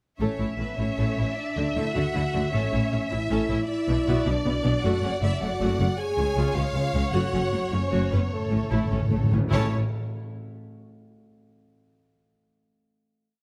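Cinematic, heroic adventure film score in 12/8 at 103 BPM in A major, a short, adventurous and soaring piece built on a full string orchestra with horns. A rich, focused studio violin section carries the melody with vibrato and a smooth top, while a clear, intense symphonic violin section sits more distant and doubles the tune at the octave. Violas supply an even, close driving ostinato and sustained chords, the cellos add a driving bass ostinato from the background, and clear double basses double the bass line, all bowed and lush. A dark, roomy French horn section holds sustained chords with light vibrato and tight classical phrasing, as the harmony moves from A through Dadd9, Bm, F#m and C# before returning to A. Round, up-front timpani played with soft mallets enter at 8.3 seconds with a fill that rolls into the louder close, and the theme gives way to a final chord at 9.5 seconds, all set in light reverb with close, detailed microphones.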